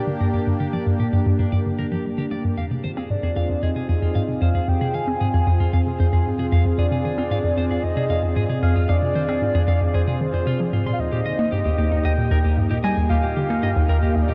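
This is ambient, sequencer-driven space music in F dorian at 114 BPM, expansive and mysterious, moving from Gm to Fm and settling on Eb at 11.0 seconds. A hollow, bouncy square-wave pluck carries the up-front riff with chorus and delay, over sustained chords from a thick, detuned sawtooth pad. A clean, scooped electric guitar fades in with quiet picked arpeggios, and a round, sub-octave synth lead with vibrato takes the melody from 3.1 seconds, all inside a huge reverb and a dark production.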